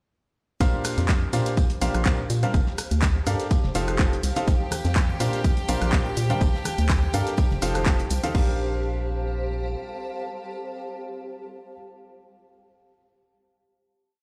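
A four-on-the-floor electronic kick at 124 BPM, lightly swung on the sixteenths, drives this joyful, feel-good piano house piece in Bb major, with a punchy analog drum machine adding shaker, closed and open hats, rim clicks, claps and crashes, and a cloth-damped, thuddy breakbeat loop with a fat snare sitting far back in the mix. An up-front, hollow, organ-like FM bass plays a dark, syncopated riff, while a clear grand piano carries the rhythmic chord riff through a vintage 12-bit sampler grit and tape echo, cycling through Bb69, Gm9 and F9. The piano, bass, pad, violins and the looped kit all pump against the sidechain. A cloudy, slowly evolving granular pad drifts in at 1.7 s, and at 4.5 s a bright chamber violin section holds a high note with light vibrato, alongside very quiet tambourine and congas struck with hard hands. The drop ends at 8.3 s, where the drums soon fall away and the piece settles onto a final Bb69 chord, heard in a bare stone room as if played through a big sound system.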